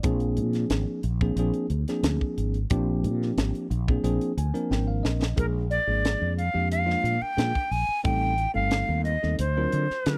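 Electric jazz fusion in a straight 4/4 at 90 BPM, centred on Bb mixolydian, this bright, soaring excerpt is cut from a longer piece and has the dry, close feel of a 1970s-style studio recording. A bell-like tine electric piano supplies clean, direct accompaniment from the start, voicing a Bb9 before moving to Bb7, Am7b5 and D7alt. Beneath it, a mellow fretless electric bass sits up front with a dark, round and punchy tone, while a tight funk drum kit of hi-hat, kick and high-tuned snare sounds mid-forward and close, as if in a small room. Around 4.0 seconds the electric piano plays a fill, joined by a drum fill at 4.7 seconds that leads into the second section. At 5.4 seconds a breathy, bright silver concert flute enters with the melody, its straight, tongued tone carrying a slapback echo and sitting prominently at the front of the mix.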